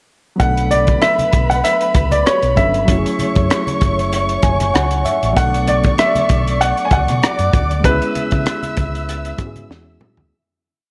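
A clear, intimate baby grand piano carries a motif-based melody over lush, bittersweet 1970s-style soul, joined by a dark, bowed violin section drifting through long high lines with vibrato and portamento, a barky, lightly overdriven reed electric piano holding rootless chords with fast tremolo and a short fill at 4.1 seconds, a round hollow-body bass weaving a melodic line with ghost notes, a tight, muffled funk drum kit up front, and very quiet low-tuned congas, all in a small room with light reverb before a fade-out from 7.8 seconds and a closing drum fill.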